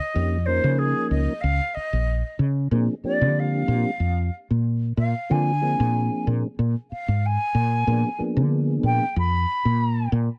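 A breathy concert flute opens this bright, soaring electric jazz fusion excerpt at 93 BPM in Bb mixolydian. Its tongued, straight-toned melody carries a slapback echo and turns into a solo at 2.7 seconds. A soft, mellow tonewheel organ with percussive attack, chorus vibrato and a slow rotary speaker accompanies, while a woody fretless electric bass, round and punchy with subtle chorus, sits up front over a lightly swung 16th-note feel in a dry, close 1970s-style studio sound with small-room ambience.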